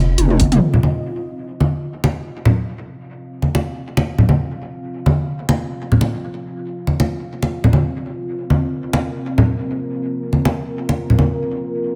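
Deep dubstep at 139 BPM in a half-time 4/4 feel with a swung sixteenth pulse, heavy and meditative in mood, cut from a longer piece. A moody sawtooth pad holds sustained chords from C4 to F5 across the full 12.0 seconds, its slow attack, detuned unison and sub octave giving a brooding, shadowy bed that is treated with chorus, built-in reverb and a filter sweep from 0.6 seconds onward. At the very start, a detuned square-and-sine wobble bass sounds a deep F1 up front for only a brief moment, compressed and chorused, while a house drum kit plays a short fill of dark, low-passed hats and toms between 0.2 and 0.6 seconds. A punchy, layered electronic kick drum sits in the background for a brief moment between 0.4 and 0.5 seconds. From 0.4 seconds, bright, saturated congas played with soft hands stay up front until 11.3 seconds, carrying the rhythm over the pad inside a moderate echo-chamber reverb.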